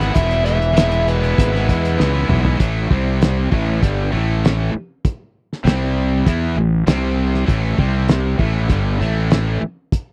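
A biting, bright lead guitar with overdrive and tape echo opens this driving, swaggering classic rock excerpt over a cranked, double-tracked stack guitar riff, punchy fuzz-toned fingered bass and a muffled, cloth-damped drum kit with a fat snare and tight kick, and a drum fill beginning at 2.0 seconds, just before the lead drops out at 2.3 seconds, carries the dry, close 1970s-style studio sound into a riff that moves between A5 and C5 chords.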